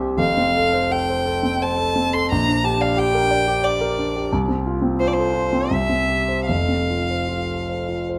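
Romantic classical duo in F major and 3/4, serene at 74-92 BPM with a flexible rubato feel, heard in an excerpt cut from a longer piece. A warm, intimate concert grand piano with deep bass, long sustain and audible action noise carries the accompaniment from the start, while a single bowed violin enters at 0.2 seconds with a clear, smooth, even melody coloured by vibrato. Both instruments sit up front in a moderate recital hall reverb, and the harmony moves from F through Gm/Bb and F/C to C before settling back on F, giving the passage a warm, gently resolved glow.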